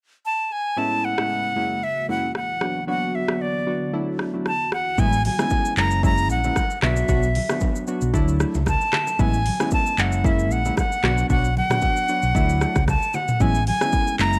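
The bright silver concert flute carries the melody from 0.3 seconds, its airy, straight tone sitting close-miked and up front with a crisp attack and a slightly unsteady edge. This breezy, sunny afrobeats cut moves at 114 BPM in A major with a gentle sixteenth-note swing, cycling through Amaj7, F#7, Bm and Dadd9. Analog keys built from detuned square and sawtooth waves add chorused, decaying chords under a filter sweep, while a deep, moody pad with slow attack and built-in reverb hovers in the background until 5.0 seconds. An electronic afro-pop kit of deep kick, metallic hats, rim click, shaker, toms and handclaps sits tape-warm and forward, its kick dropping out briefly just before the second section. At 5.0 seconds a round, amped hollow-body electric bass arrives alongside distant congas and bongos echoing from a large room. The overall sound is dry and gritty, cut from a longer piece.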